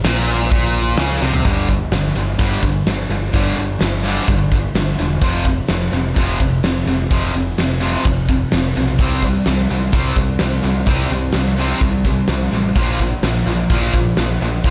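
A dry fragment of aggressive, menacing hard rock in G minor at 127 BPM, driven by a huge arena drum kit placed up front, with a fat snare, punchy kick, toms and hi-hat ringing through a pumping hall room. A tight, bright distorted guitar riffs alongside a second, compressed distorted electric guitar sitting in the background, while a dark, round picked electric bass anchors the low end. After a drum fill at 1.2 seconds, the riff moves through G5, F5, C5 and Bb5 power chords from 1.5 seconds onward.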